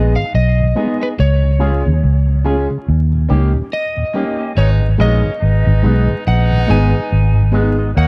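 A laid-back, hypnotic reggae groove with a swung sixteenth-note lilt opens this short cut from a longer piece, where a dark, round, foam-muted electric bass sits up front under woody upright piano stabs, a twangy envelope-filtered guitar with lush chorus, a soft flute-like tonewheel organ with key click in the background, and a slightly broken-up, compressed lead guitar melody trailing dub echo, before a clear vintage horn section joins at 4.6 seconds with a second line, all captured as a dry, close 1970s-style studio recording with vinyl crackle.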